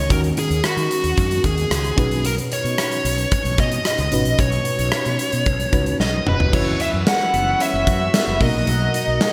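Driving straight 4/4 at 112 BPM, a big rock drum kit with a punchy kick, medium-tuned snare and bright cymbals sits up front in gated reverb alongside a round, dark fretless electric bass. This urgent, moody 1980s-style pop excerpt opens with a bluesy overdriven lead guitar carrying the melody, its distorted tone framed by shimmer reverb and digital delay, over a mellow FM electric piano with tremolo that fills in the chords, moving from D#m7 to Badd9. A drum fill from 6.0 to 6.5 seconds leads into a new section on F#7sus4 and Bmaj7, where a chorused pulse-width pad adds glistening sustained chords high above. A clean, compressed electric guitar recorded direct also enters at 6.5 seconds with a picked riff in the background, coloured by analog chorus. The bright digital production places everything in a moderate plate reverb with studio ambience.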